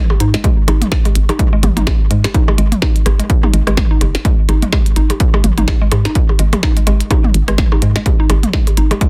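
Minimal techno with a sparse, quirky, swung feel, cut from a longer piece, in which a dry, punchy analog kick sits up front beneath a hollow, bouncy FM bass with tube saturation and sidechain pumping, while a woody, round mallet-like synth pluck riff with chorus, pumping and dub echo floats over tiny soft-clipped snares and clicky, tape-warm hi-hats, and an overdriven techno kit scatters percussion blips, rim clicks and toms through digital delay, all in a dry, dense, heavily limited modern mix.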